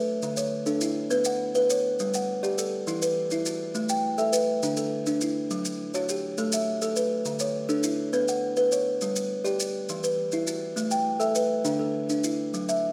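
Set in 12/8 with a straight feel, this Southern African traditional piece moves as an interlocking mbira-style cycle, its mood warm and rippling. Up front, a buzzing kalimba spins arpeggios with a woody, hollow-box tone and a thumbnail pluck that rings out, while close, dry maracas add a grainy, mellow pulse underneath. A moderate concert-hall reverb gives the short excerpt a spacious glow.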